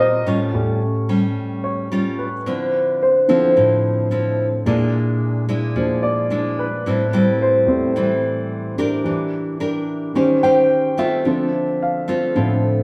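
Bossa nova at 109 BPM in a straight 4/4, sunny and breezy, where a fingerpicked nylon-string guitar with fresh strings and a classical touch sits close alongside a warm grand piano that takes a present, long-sustaining solo across the whole 12.8-second cut from a longer piece, moving through chords like A7b13, Dm9, Bb7#11 and Eb13 while the live band rings in a wet stone room.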